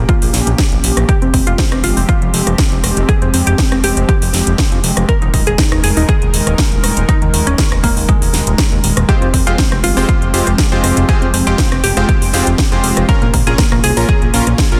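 This bittersweet, emotional progressive house excerpt in F minor opens on a breathy, soft pad holding sustained chords alongside glassy, crystalline wavetable pluck arpeggios, both with chorus and sidechain pumping, while the pluck carries dub echo and a filter sweep running throughout. A fat, thick analog bass built from detuned sawtooth tones grounds the harmony and pumps with the sidechain as well. Within 0.1 seconds an overdriven, punchy electronic kick drives a straight 4/4 at 120 BPM, joined by a house kit of cracking snare, metallic hi-hats and rim clicks, the drums sounding re-recorded in a large room. The chords move from Bbm to Fmadd9, then Ebsus4, back to Fmadd9 and Bbm again. At 9.1 seconds an evolving supersaw stab with unison detuning, a noise layer, cassette tape coloring and dub echo enters, lifting the texture in a dense, heavily limited modern mix with light reverb.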